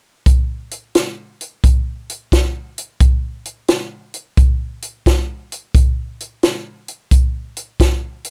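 A dry, up-front sound with light reverb frames this short blues cut from a longer piece, where a compact cocktail drum kit plays alone at 88 BPM in a swung 4/4, its punchy kick, high-tuned snare and hi-hat carrying a soulful, rollicking feel from 0.3 to 8.3 seconds.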